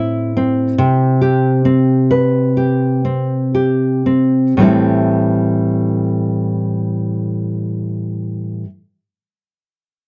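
A dry, close recording with a 1970s studio feel and a touch of moderate reverb puts a solo fingerpicked nylon-string guitar up front, its tone full-bodied with a deep classical character. This short pop excerpt in A minor moves slowly, between 56 and 74 BPM in 4/4, easing back over its first 4.6 seconds as it passes from Am to C5. At 4.6 seconds it settles on Am7, carrying a heartbroken, longing mood.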